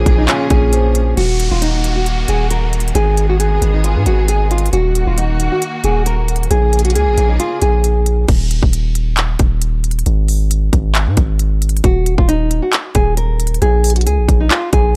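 A half-time trap beat at 135 BPM in Eb minor, built on a crisp, hard-clipped trap kit and a deep, sine-toned 808 bass that runs the full 15.0 seconds, drives this dark, eerie hip hop passage, where a fingerpicked nylon-string guitar carries the melody up front, a mellow, vintage grand piano is heard only in the opening 1.2 seconds, lush bowed strings hold sustained chords until 8.3 seconds, and a faint electronic downlifter sits low in a dry, gritty recording.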